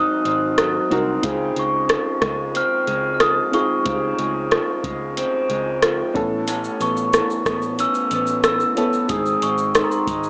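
Rubber-mallet glockenspiel carries a soft, bell-like melody with subtle chorus over a dark, woody upright piano with audible action noise and a slightly broken-up, lo-fi electric guitar with warbly pitch drift; a round, foam-muted electric bass enters at 0.2 s and an up-front analog rhythm box with deep kick, metallic hats, rim click, shaker and 12-bit sampler grit joins at 0.3 s, giving this sunny, dreamy 92 BPM indie-pop and bedroom-pop excerpt in Db major a light reverb and cassette-tape, small-speaker sound as the chords move from Ab7 through Dbmaj7 and Aadd9 to Ab.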